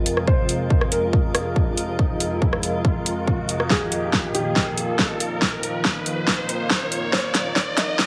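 A punchy, up-front electronic kick and a dubstep drum kit with a huge snare, metallic hats and rim clicks drive this chaotic, heavy wobble dubstep build-up in F minor at 140 BPM in a half-time feel, with a drum fill running from 3.7 seconds to the end of the excerpt. Beneath them, a lush, detuned sawtooth-and-square unison pad holds a sustained Fm chord through chorus, phaser and sidechain pumping, while a blurred, evolving granular cloud pad floats higher up. A soft, felt-muted upright piano carries the melody through a low-pass filter and tape echo, and an electronic riser climbs while a filter sweep runs across the whole passage in a moderate digital room.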